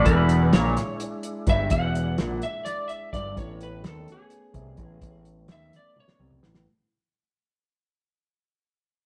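A rough rehearsal-room recording in a moderate stone room, this hazy, trippy psychedelic rock excerpt in 7/8 at 254 BPM (eighths) fades out across its 6.7 seconds as a slightly broken-up, compressed slide guitar played with fingerpicks takes a solo over a bright, double-tracked fuzz guitar riff with distortion, phaser and a filter sweep, a growling overdriven picked bass, a mellow vintage combo organ holding very quiet sustained chords with heavy vibrato, and an up-front, cloth-damped thuddy drum kit with a fat snare and tight kick that plays a fill from 6.0 seconds, all moving from E7 to Aadd9.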